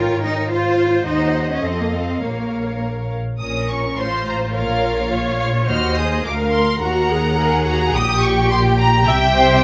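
Urgent and dramatic, this quick classical-period movement for string orchestra drives forward at 106 BPM in a straight 2/4, set in Bb minor and cut from a longer piece. The violins carry the melody high in their range, their bowed, vibrato-laden tone smooth and even yet set at a distance, while a second violin line sounds focused and lush beneath it. Violas fill in the accompaniment with a rich, silky top, and the cellos sit close in the bass, their bowed sound full and focused. The double basses anchor the lowest register with a clear, up-front presence. Light reverb surrounds the ensemble, and after an opening passage that settles onto Bb minor around 2.2 seconds, a new section begins at 3.4 seconds, turning toward Eb minor before closing on a C chord at 9.1 seconds.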